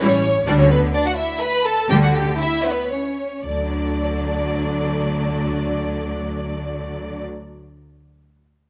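A close, up-front violin section carries the melody with smooth, even vibrato, floating high over this short cut from a quick, lively and graceful classical-period movement for string orchestra in 3/4 and D major, moving at about 108-130 BPM. Beneath it, a second violin section plays a focused, lush line, while rich violas supply the accompaniment and cellos with a smooth top hold the bass together with a more distant double bass section touched by light vibrato. All five sections play throughout, from 0.0 to 7.2 seconds, the bowed ensemble sound settling into a recital hall with moderate reverb. The opening phrase slows down over its first 3.5 seconds, passing through A7 and G5/D harmonies before landing on a D chord at 3.5 seconds, where a second phrase begins.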